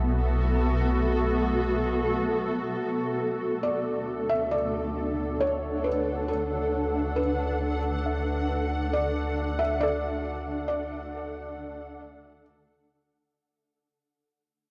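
In a slow, straight 3/4 at 68 BPM, this peaceful, luminous ambient fragment in D lydian rests on a blurred, detuned granular cloud pad holding sustained chords up front, over a deep, ominous rumbling drone that fades out from 2.8 seconds as the harmony moves from Bm7 to D. A very quiet, round pluck traces arpeggios at the start and again from 8.1 seconds. A felt-muted upright piano with audible action noise carries an intimate melody through diffuse ambient delay from 3.6 seconds, all set in a huge reverb with the warbling pitch drift of worn cassette tape before the whole fades from 9.8 seconds.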